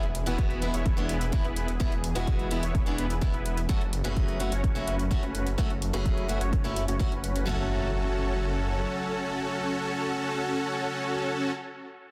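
A bright, boxy picked steel-string acoustic guitar opens this euphoric, anthemic festival progressive house excerpt at 127 BPM in F# minor. Alongside it come a huge supersaw riff that sits up front under a filter sweep and dub echo, a menacing, beating detuned saw bass, and overdriven, metallic electronic hi-hats. A punchy, layered kick arrives just after the start, and the guitar, supersaw, bass and a lush chorused pad in the background all pump against the sidechain. The pad holds sustained chords with a slow attack and vintage 12-bit sampler grit as the harmony moves from E to F#m at 3.7 seconds. The drums fall away by 7.5 seconds, when a very quiet electronic impact enters; the bass holds on until 8.8 seconds, leaving guitar, pad and supersaw ringing in a dense, heavily limited mix with light reverb.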